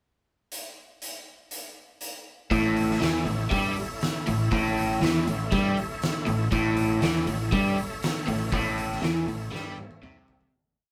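This swaggering blues rock power-trio piece with a southern rock edge drives along at 120 BPM in 4/4 with a straight feel, centred on A mixolydian. An oversized, low-tuned acoustic drum kit opens alone at 0.5 seconds with a pickup bar, its fat snare, punchy kick, hi-hat and toms up front and saturated in a pumping stone room. At 2.5 seconds the band lands on A: a bright, double-tracked, compressed overdriven electric guitar picks a single-note riff up front, while a growling fingered bass, overdriven and direct-and-amped, doubles that riff in driving eighth notes. Above them an overdriven tonewheel organ adds thick, percussive held chords with swells and changing inversions, colored by chorus vibrato and a fast rotary speaker. The band sounds like it is playing live together in one room with moderate studio reverb, and the whole piece fades out from 8.5 seconds as the drums close on a fill.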